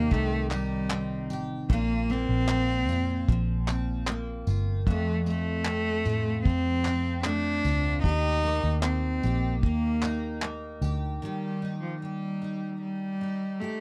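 Carefree yet heartfelt, this acoustic pop excerpt moves at 76 BPM in a straight 4/4, with a bowed cello carrying the melody up front in a clear, focused voice with vibrato, over a double-tracked, picked steel-string dreadnought guitar that sounds full-bodied. A vintage fingered electric bass, foam-muted and round, and a cloth-damped, thuddy drum kit with a tight kick, handclaps and tambourine sit close and dark before dropping out around 11 seconds, leaving cello and guitar to close the passage. The sound is a dry, close 1970s-style studio recording, moving through Cm, Bbsus2, F and Eb.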